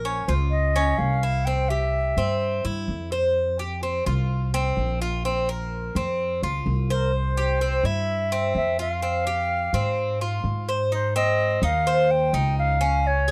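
Latin Cuban son and guajira in F minor at 127 BPM, this sultry excerpt pairs a bright, metallic Cuban tres picking up-front arpeggios and a woody, growly pizzicato upright bass throughout with a pure, crisp-attacked concert flute melody that plays from 0.0 to 2.6 seconds and returns at 6.9 seconds, all in a dry, close 1970s-style studio sound as the chords move from Bbm and C toward Ab and Db in the closing section.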